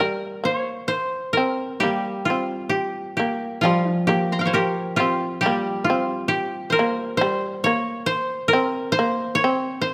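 Calm and austere, this fragment of Japanese chamber music moves in a free, rubato 4/4 around 67 BPM in C sen, with an up-front, woody koto carrying the high melody over a mellow, buzzing, plectrum-plucked shamisen second line with a powerful, percussive bite, while a second, warm, dry koto adds low accompaniment from 1.8 to 8.1 seconds, all set in a moderate recital hall reverb.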